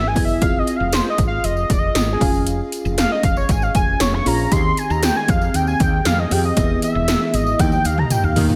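A straight 4/4 pulse at 117 BPM drives this glossy, romantic 1980s-style pop excerpt in Ab major, where up-front punchy electronic pad drums with gated reverb on the snare and toms and an overdriven edge enter at 0.2 s and close with a fill from 7.6 s, a jingly tambourine sits in the background, a woody, round fretless bass anchors the low end, a lush, dreamy FM electric piano with a soft pad layer and chorus fills the harmony through Fm7, Db/F, Abmaj7/Eb, E and Eb, and a bold, nasal octave-doubled lead carries the melody with vibrato, chorus and tape echo, all set in a moderate scoring stage reverb.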